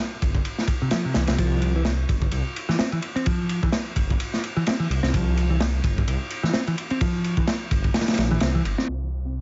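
Funky and energetic, this short breakbeat cut moves at 128 BPM in 4/4 with a 57% swing on the sixteenths, resting on an Fsus2 chord until the harmony drops away at 8.9 seconds. A crunchy, up-front acoustic breakbeat kit of tight kick, medium-tuned snare and dark ride cymbal drives the groove from 0.2 seconds, its saturated, gritty character framed by a rolled-off top. Beneath it, a dark detuned saw bass rumbles deep in the low register, its detuned layers beating against each other with a fast attack and sustained tone, lingering until 9.4 seconds. A picked electric bass enters at 0.8 seconds to carry the riff in a higher register, punchy and direct, roughened by vintage 12-bit sampler grit and trailed by tape echo. The whole piece sits in a small room ambience, dusted with vinyl crackle and filtered so that nothing rises above 7.8 kHz, giving it a murky, lo-fi cast.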